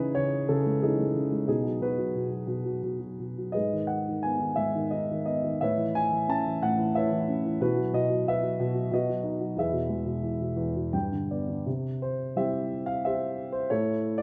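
A dark, mellow grand piano opens alone on a C#madd9 chord, playing a lyrical classical solo in a sunny, relaxed mood, moving in a rubato 3/4 at around 83-93 BPM through B, G#m and Aadd9. The piano sits up front with a boxy tone, spanning E2 to A5 inside the moderate reverb of a scoring stage. A brief piano fill at 10.6 seconds leads into a new section at 11.7 seconds, where the harmony shifts to C and then A as this passage from a longer piece cuts off.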